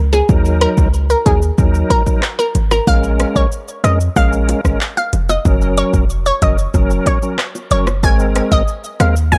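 A straight, bouncy dancehall groove in 4/4 opens with a boomy 808-style bass at 0.0 seconds, soon joined by an up-front electronic afro-pop kit of deep kick, metallic hi-hats, handclaps, rim clicks and shaker, with low-tuned acoustic bongos struck with hard hands in the background. A round, detuned analog pluck carries the sultry melody through chorus and digital delay, while a reedy, lightly overdriven tonewheel organ enters at 0.3 seconds with key click and a fast rotary speaker, moving through Ebm, Bbm7, Gb and Abadd9. The production is dark and warm, with little reverb, and the clip is cut from a longer piece.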